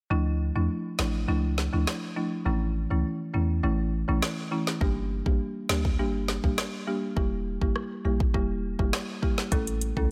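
Bouncy and tough, this dancehall excerpt sets a rustic, close-miked folk marimba struck with medium mallets against a boomy, sine-toned 808-style bass, with an electronic afro-pop drum kit entering at 1.0 seconds to put a deep kick, woody snare, metallic hats and rim clicks up front over a chord cycle moving from Dmadd9 through A, Gm and Edim in a digital ambience.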